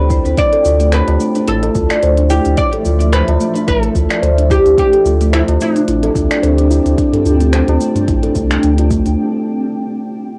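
Heard through the soft haze of a home cassette recording in a small, damp-sounding booth, this mystical, hypnotic stretch of organic downtempo moves at 109 BPM with a light sixteenth-note swing in D dorian, resting on a Dmadd9 chord. A woody, fretless oud carries the melody with tape echo, while a round, meditative steel tongue drum plays echoing arpeggios and a cloudy, evolving granular pad breathes sustained chords with sidechain pumping, holding on alone after the other parts stop near 9.2 seconds. Underneath, a deep, round sine sub bass sits up front, an overdriven electronic kick and a crisp, tape-softened kit of cabasa, finger snaps and hi-hat drive the groove, and a low-tuned, ringing tabla enters at 1.1 seconds in the background.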